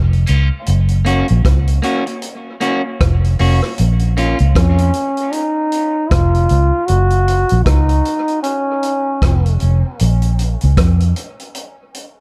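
A dark production with small room reverb sets a spacious, deep dub reggae fragment with a swung feel, cut from a longer piece. A round, foam-muted fingered electric bass sits up front, while a vintage drum kit with a punchy kick, rolled-off top, hi-hat and rim click gives a natural acoustic pulse. A bright, twangy electric guitar at the edge of break-up plays accompaniment through spring reverb, a high-pass filter and dub echo until 4.4 seconds, and a clear trombone carries the melody from 4.6 seconds, also trailed by dub echo.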